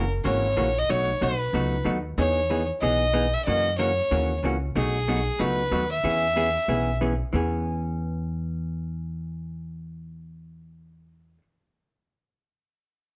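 Light reverb colours this short cut from a longer country piece, with every player up front. It is a playful, swinging western swing number at 186 BPM in 4/4, with a lively swung eighth-note feel in E major. A single bowed fiddle carries the melody with a clear, biting, earthy tone and light vibrato, playing until 7.0 seconds. Beneath it, an electric hollow-body jazz guitar picks dark, clean, compressed accompaniment, while a pizzicato upright bass with gut strings adds a woody, thumpy pulse. The harmony moves through F#7, B7 and Emaj7 before returning to F#7 and B7 and landing on E6, and the guitar and bass carry on together to the close at 11.4 seconds.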